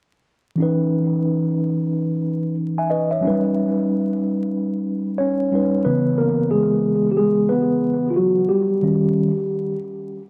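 Hip hop with a nocturnal, cool mood, cut from a longer piece at 91 BPM in 4/4 with a 63% swing on the 16ths, set in C# dorian and tuned to A4 = 439 Hz. A mellow, clean tine electric piano plays alone from 0.6 to 9.8 seconds, sitting up front as if heard through built-in speakers, with analog delay on its chords of C#m9, D#7b13, C#m7 and D#7. A moderate spring reverb and an echo-heavy mix, dusted with vinyl crackle, give the short passage a hazy late-night air.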